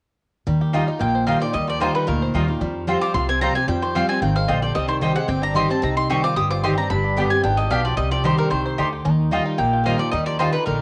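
A driving, rustic bluegrass passage cut from a longer piece opens at 0.5 seconds at a brisk 224 BPM, with a full-bodied jumbo steel-string guitar picking the accompaniment up front with audible finger squeak, a thumpy, woody upright bass, and a twangy, percussive banjo melody sitting in the background, all but the bass carrying a cassette-tape color. A mandolin adds picked stabs from 0.7 seconds, and at 1.0 seconds a second, round-toned mandolin takes the lead melody while a metallic, nasal lap resonator guitar with slide plays a second line. The chords move through Ebadd9, Fsus2, Cm, G and Cmadd9 before returning to Ebadd9, all heard in a small, lightly reverberant room on a homemade cassette recording.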